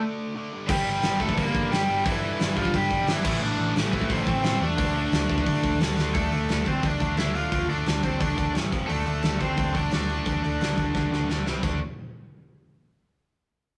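An up-front, overdriven garage guitar opens this aggressive, urgent punk rock cut, carrying the melody over a very quiet, bright overdriven riff guitar. At 0.7 seconds the full band crashes in: a tight distorted guitar riffing in the background, a double-tracked, scooped high-gain guitar that drops out at 6.1 seconds, and a dark, round hollow-body short-scale bass played with a pick. The big acoustic drum kit sits up front with a mid-forward, rolled-off top, a medium-tuned snare, a tight kick, and crash and hi-hat work. A drum fill marks the shift into the second section, where the chords move through power-chord shapes, and another fill near the end leads into a brief closing passage. The whole thing has the rough, roomy feel of a rehearsal-space take, with moderate reverb adding a bit of space to the raw, driving energy.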